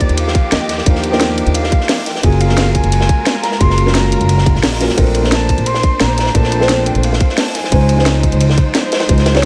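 A woody, growly pizzicato upright bass sits up front beside a tight electronic kick in this lush, uplifting liquid drum and bass clip, joined by a layered kit with a cracking snare and hi-hats, a dark, saturated breakbeat kit with high-passed cymbals entering at 0.2 s, a soft felt-muted upright piano with audible action noise, veiled con sordino strings pumping in the background, and a distant, airy flute melody carrying 12-bit sampler grit and digital delay until 8.2 s, set in small room ambience.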